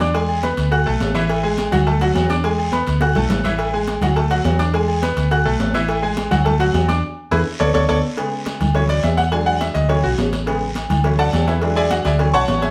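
A bright, slightly worn concert grand piano opens this joyful, danceable salsa excerpt, up front and intimate with its action noise audible, alongside a dark, punchy hollow-body electric bass and a bed of percussion. At 209 BPM in straight 4/4, the band cycles through E7, D and A5 chords. Softly played, high-tuned congas sit close and dry in the background with a round, low cowbell, while a raspy guiro sounds in a live room and ringing metal-shell agogo bells and timbales sound more distant in a large room. Drum fills and a band accent lead into 8.2 seconds, where the piano takes a solo over richer harmony moving through Bm69, Dmaj7, E7 and Amaj7. The whole group plays live together in one room, set in a wet studio reverb.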